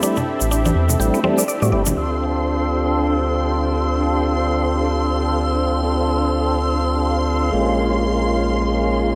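Deep house at 124 BPM in D minor, this smooth, warm cut from a longer piece rides a swung sixteenth-note feel. The opening pairs a woody, FM-flavoured mallet pluck spinning arpeggios through chorus and digital delay with a grainy, close egg shaker, and bright, low-tuned vintage congas join at 0.2 s, all three falling away by 1.9 s. Up front, a fat tonewheel organ punches out clean stabs with key click and vibrato, its slow rotary speaker softened by a low-pass filter and trailed by delay, while a round, deep analog bass arrives at 0.4 s. Behind them sit a detuned sawtooth pad holding sustained chords with a moving notch and an ethereal, airy pad whose slow attack, tremolo and built-in reverb give a mellow haze. From 2.0 s a shimmering string machine of violins holds a high C6 with ensemble chorus as the harmony shifts from Am7 to Dm7, then darkens to Bbm7 at 7.5 s. A moderate, lush hall reverb wraps the mix in a soft, spacious glow.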